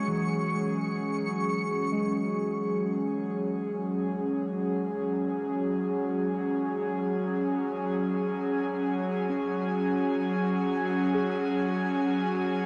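Serene and melancholic, this ambient passage in free time, cut from a longer piece, rests on an F#sus2 chord, with an airy, breathy pad holding sustained chords up front while muted, felt-like synth keys play dark arpeggios with chorus and delay in the background, a twinkling granular texture sparkles until 1.5 s, and a nasal, bowed-like drone with vibrato fades in from 4.9 s, all soaked in a lush hall reverb.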